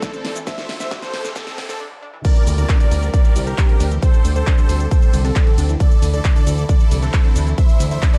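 A punchy, up-front electronic kick powers this soaring, driving uplifting trance excerpt at 135 BPM in 4/4: a short build-up brings a drum fill with the huge snare of the big-room kit and a filter sweep on the brilliant baby grand piano, then a break at 1.8 seconds and the drop at 2.2 seconds, after which a fat, detuned analog bass enters at 2.5 seconds beneath lush supersaw chords that pump with the sidechain and trail dub echo, smooth distant strings, a very quiet round analog pluck playing arpeggios, and a faint riser, noise sweep and downlifter, the whole mix sitting in a dark digital ambience.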